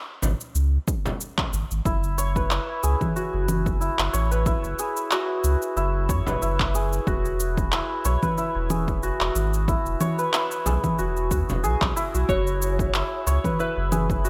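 A shimmering, hammered santur plays delay-soaked arpeggios from 1.9 s over F#7 and E chords in this earthy, meditative organic downtempo passage at 92 BPM with a swung 16th feel, supported by a round, up-front sub bass with sidechain pumping, overdriven and reverberant layers of electronic shaker, handclaps and congas alongside a punchy electronic kick, brief hits from a deep, vintage-sounding frame drum, and a dark, clean slide lap steel melody with digital delay that enters at 12.3 s, all set in a light reverb.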